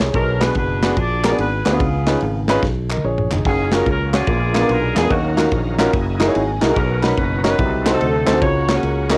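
A dry home cassette recording captures this short excerpt of uptempo gospel with a swung feel, reverent and uplifting in mood. An up-front grand piano carries the accompaniment from the start, over a growly fingered electric bass and an airy, polished studio drum kit with a punchy kick, medium-tuned snare, ride, splash and toms, while hollow group handclaps sit in the background. A mellow, tight horn section with light vibrato takes the melody almost at once, its vintage tone colored by cassette tape, as is the drum kit. A drum fill leads into the entry of a bright, lightly overdriven tonewheel organ at 3.5 seconds, holding very quiet sustained chords through a slow rotary speaker with chorus vibrato and key click. The piano adds a fill from 6.1 to 6.8 seconds as the harmony moves through rich ninth, thirteenth and diminished chords.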